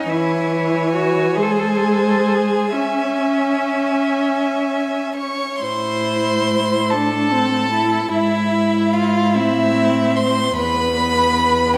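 Classical chamber music for string quartet, this slow, romantic movement in 6/8 moves at about 40-50 BPM with a rubato feel, carrying a melancholic, solemn mood. It opens in C# minor with the first violin singing the melody high in its range, its tone dark and intimate, played sul tasto with a soft attack, an airy bow and light vibrato, and set close and up front. A second violin shapes a focused, smooth-topped second line beneath it with vibrato. The viola's expressive accompaniment stands slightly forward, glowing with vibrato, a soft attack and touches of portamento. A clear, even cello supplies the bass with smooth vibrato, sounding a touch distant. At 5.6 s the harmony turns to A minor for the second half, passing through E/G# before settling on A minor and closing on a bare E5 chord near 10.6 s, all in a moderate scoring-stage reverb that lends the quartet a gentle sense of space in this fragment cut from a longer piece.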